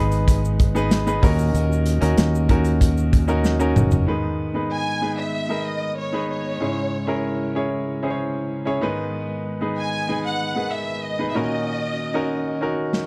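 A dry, close-sounding mix opens this bittersweet, dramatic stretch of piano-driven pop, cut from a longer piece and moving in a straight 4/4. A brilliant concert grand carries the accompaniment up front throughout, its short-sustaining tone reaching into a deep bass, while a soft, flute-like tonewheel organ sits in the background with sustained chords, its key click and percussive attack colored by a fast rotary speaker. In the opening bars a round, dark fingered electric bass and a punchy acoustic drum kit with a pumping room sound drive the groove, joined by a grainy egg shaker tucked behind them, until a drum fill from 3.4 to 4.1 seconds closes that passage and the bass, shaker and kit drop away. At 4.7 seconds a lush violin section takes the melody, bowed with vibrato and portamento and given a slapback echo, singing expressively over the piano and organ as the harmony moves between G#m, C#m and D#m7. 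The drums return briefly at 12.9 seconds just as the excerpt cuts off.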